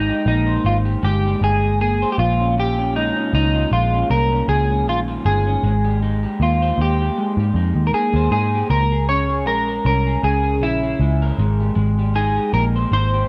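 This dreamy, sunny stretch of indie bedroom pop opens with all three parts together: a clean electric guitar carrying the melody, a second electric guitar played through a small old amp, and a muted picked electric bass. At 78 BPM in 4/4 with a light swing on the sixteenths, it drifts through lush chords in Ab major, moving from Abmaj9 to Bbm11, back to Abmaj9, then to a Dbm6 at 8.7 seconds before settling home on Abmaj9. The clean, up-front lead guitar sings warmly through analog chorus. The accompanying guitar sits further back, slightly broken-up and picked, with its own chorus and a vibrato effect adding a woozy shimmer. Underneath, the foam-muted bass is dark, round and prominent, giving the low end a vintage thump. The dry, close 1970s-style studio sound gets a touch of digital ambience, and this fragment of a longer piece ends at about 13.3 seconds.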